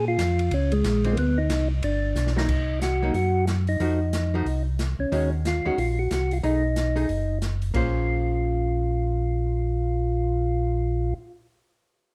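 A percussive tonewheel organ sings the melody through a slow rotary speaker in this late-night, soulful soul jazz organ trio fragment with a swung feel, alongside a round, mellow second organ voice holding the bass line up front, a dark, clean hollow-body archtop guitar accompanying from 1.0 seconds, and an airy small-room jazz kit with boomy kick that adds a fill at 2.2 seconds, all set in light reverb.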